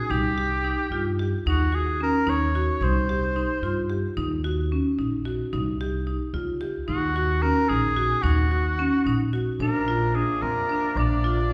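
A pulse of 221 eighth-note beats per minute in a straight, uneven 5/8 propels this urgent, restless contemporary chamber excerpt in Eb dorian, cut from a longer piece and moving between Cm and Ebm before settling on Bbadd9. A bright, woody marimba struck with hard mallets spins close, dry arpeggios up front, while a growly pizzicato upright bass anchors the low end and a clear, smooth-topped oboe with vibrato sings the solo melody, pausing at 3.9 seconds and returning at 6.9 seconds. At 9.6 seconds a warm woodwind section enters in the background with softly vibrato-touched sustained chords, all set in the wet reverb of a recital hall.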